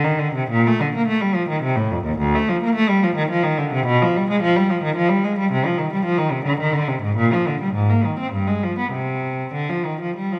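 Grave and solemn, this brief passage cut from a longer piece is a baroque-style suite movement for unaccompanied cello, moving in a rubato 3/4 at roughly 95-111 BPM. A single bowed cello plays alone throughout its 10.4 seconds, sitting up front with a rich, reedy gut-string tone in period style and ranging from D2 to C4. A moderate scoring-stage reverb with a 1.8-second decay gives the instrument a spacious, resonant setting.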